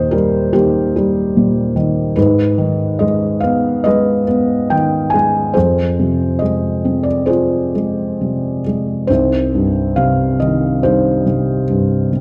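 A felt-muted upright piano plays alone in a wistful, lyrical classical passage in C minor, moving with a rubato feel at 66-74 BPM in 4/4 and spanning C2 to Ab5. The close, intimate piano has a thick-felt, mellow softness, with its action noise audible up front, as the harmony passes from Eb through Abm and Fm to settle on Cm at 9.1 seconds. A moderate concert hall reverb surrounds the dark production of this 12.2-second fragment cut from a longer piece.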